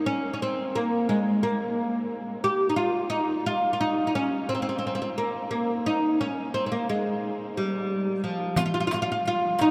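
This Turkish makam ensemble piece, cut from a longer performance, has a hypnotic, soulful mood in a straight 9/8 metre. A fretless oud carries the melody from the start, plectrum-plucked on double strings with a deep, woody tone that sits up front. For most of the recording the oud plays alone, its line moving through the ussak mode with microtonal shadings. At 8.6 seconds the darbuka and riq enter together in the background. The darbuka brings a crisp, high metal-shell voice struck with hard hands, and the riq adds bright jingles. A huge, wet ambient reverb places the music in a vast, echoing space, with long tails that hang behind the notes.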